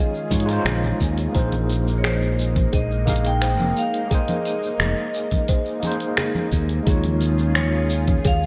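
A deep house kit of finger snaps, hi-hat and shaker under gated reverb opens the groove at 0.1 seconds, and from 0.3 seconds a knocking, tape-warm electronic kick, a growly, up-front fingered electric bass and soft-handed congas ringing in the background join it in a straight, relaxed 4/4 at 87 BPM, in this wistful sunset chillout excerpt in Bb minor. A metallic vibraphone played with medium hard mallets carries the melody through digital delay, over a gritty, overdriven tine electric piano with fast tremolo and delay, a lush, detuned unison pad with chorus and phaser, and woody, plucked kalimba arpeggios with delay. The chords move between Eb9sus4 and Bb9sus4 within a bright 1980s-style digital production with light reverb.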